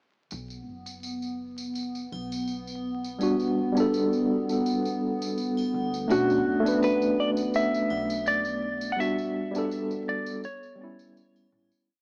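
Brooding and dark, this short trip hop piece moves at 83 BPM in a straight 4/4 in B minor, a complete piece that begins to fade out at 8.0 seconds. A warbling, nostalgic pad built from detuned, wave-folded square and triangle tones holds sustained chords with a slow attack and a held high note, coloured by chorus, built-in reverb, 12-bit sampler grit and cassette tape. Underneath, a woody pizzicato upright bass with gut strings plays a thumpy, dub-style line, while a loose tambourine and triangle sit quietly in a small room. At 3.2 seconds a worn, slightly out-of-tune tine electric piano enters up front with held rootless chords and syncopated pushes, treated with tremolo, tape echo and cassette tape. A clean, compressed lap steel guitar arrives at 6.1 seconds with a fingered slide melody of short call phrases, roughened by sampler grit, over a progression that moves from Bm7 to Em7 and closes on a rootless A7. 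A lush hall reverb, vinyl crackle and a small-speaker, home-cassette sound give the whole piece a faded, intimate haze.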